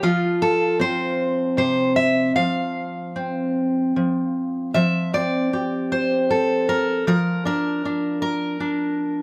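Moving in 6/8 at a slow 52 beats per minute, counted in dotted quarters, the pulse breathes freely with a rubato feel. This short folk excerpt, cut from a longer piece, features a single fingerpicked steel-string dreadnought guitar in F major, spanning from C3 up to F5. Its tone is dark and full-bodied, sitting up front in the mix with a moderate studio reverb. The harmony opens on an F5 chord, moves to C5 over F at 4.7 seconds as a second section begins, then settles on B-flat over F at 7.1 seconds. The mood is pastoral and warm, unhurried throughout its nine seconds.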